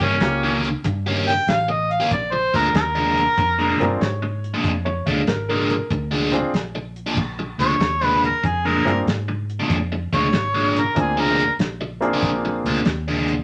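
A swinging shuffle drives this gritty, swaggering electric blues excerpt, where a tight, dark soul drum kit and a round, punchy muted electric bass carry the groove beneath a biting overdriven guitar riff washed in phaser and a clear grand piano with long sustain, while a woody upright piano adds a brief bright second line from 3.8 to 6.0 seconds and an up-front, mellow overdriven harmonica with light vibrato and scooped notes leads the melody before taking a solo at 7.2 seconds, all set in a moderate studio reverb.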